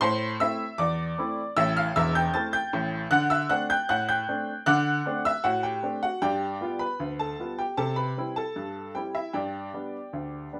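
A lightly reverberant, up-front recording of a woody, worn and slightly detuned upright piano carries this cheerful, playful ragtime fragment at 77 BPM in 2/4 with a straight feel, the solo instrument ranging from E1 to A6 with long sustain as it moves through Am, D7, G7 and C before settling on G in a short 10.6-second section cut from a longer piece.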